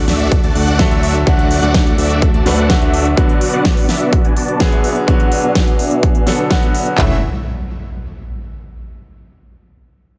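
Opening on a D chord with an electronic impact, this euphoric, triumphant festival progressive house excerpt at 126 BPM sets a thick, detuned supersaw riff carrying a low-pass filter sweep and delay over a brilliant grand piano accompaniment with delay and a fat, wave-folded analog bass, all three pumping to the sidechain, until the bass stops at 3.1 seconds as the harmony moves to B minor, while a tape-warm big-room dance kit drives with a punchy kick, huge snare, crisp hats, handclaps and toms before a second impact arrives and the bass returns on an A chord at 7.0 seconds in light reverb.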